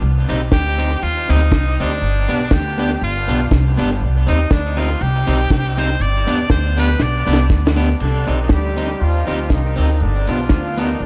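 A bright, vintage-toned tenor saxophone carries the melody with vibrato in this mischievous, energetic ska fragment, its solo line trailed by dub echo until about 7.5 seconds. Underneath, a woody, thumpy upright bass with gut strings sits up front, plucked pizzicato through a lightly swung groove that alternates between C minor and G. An electric guitar at the edge of break-up adds twangy, fingered accompaniment, colored by spring reverb and dub echo. The deep reggae kit is dry and dark, with a high-tuned snare, tight kick, hi-hat and crash, and its rolled-off top is also touched by dub echo; a drum fill from 7.0 seconds hands off to a clear horn section at 8.0 seconds, which takes over the melody in octave-doubled ensemble with vibrato. A moderate large studio reverb and tape saturation give the whole recording a vintage glow.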